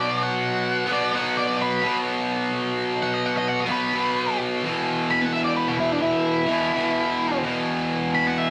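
Swung eighths at 86 BPM in 4/4 drive this swaggering, gritty rock excerpt, where a bright, overdriven, double-tracked electric guitar riff sits up front in the low register while a dark octave-fuzz lead guitar solos through the full 8.5 seconds, its distorted, picked melody ranging from D4 to B5 over B5 and E5 chords, all captured with light reverb as a band playing live in one room tuned to A4 = 439 Hz.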